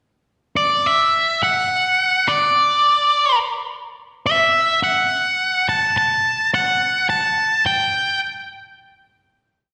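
Post-rock at 106 BPM in a straight 4/4, soaring and cinematic in mood, this short, complete piece features a single octave-fuzz lead guitar playing solo from 0.6 to 8.2 seconds. The dark, distorted electric tone sits up front, its picked, motif-based melody shaping arch phrases between D5 and A5. A wet recital hall reverb with a long 1.7-second decay fills out the sound of a church or concert hall before a final hit at 9.4 seconds.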